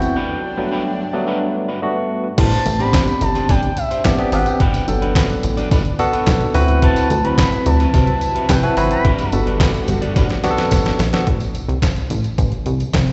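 Heard through a venue's PA in a reverberant recital hall, this cut from a longer piece has a dulled top end and a light reverb sheen. It is slick, funky early-eighties boogie funk at 108 BPM in A dorian, moving from Gmaj7 through Am11 and D13 before settling on Am. A detuned 8-bit digital drum machine sits up front with a thumpy kick, medium-tuned snare, handclaps, hi-hat and crash. Alongside it from the start are a plucky analog bass with a nasal, ring-modulated sawtooth bite and a distant, jingly tambourine in the background. A barky tine electric piano played through a combo amp carries the accompaniment with slapback echo, while a twangy electric guitar at the edge of break-up plays a riff with subtle chorus. An expressive, dark synth lead with vibrato, chorus and tape echo sings the melody until 9.4 seconds, a lush detuned unison pad sits behind it and returns at 6.8 seconds, and a drum fill at 10.2 seconds leads into the closing bars.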